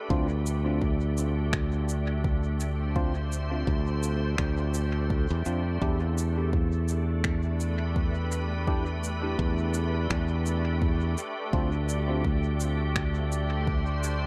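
A swung 84 BPM groove in 4/4 is driven by a deep, overdriven electronic kick and softly rolled-off shaker and finger snaps trailing dub echo. This meditative ambient dub passage is cut from a longer piece and moves from Dm7 to Em7 before settling on D7(no3). A punchy, bright fingered electric bass sits up front, while a pure, sine-like organ pad with ensemble chorus sustains chords and a clean tine electric piano drops echoing stabs into the background of a small room until 12.2 seconds.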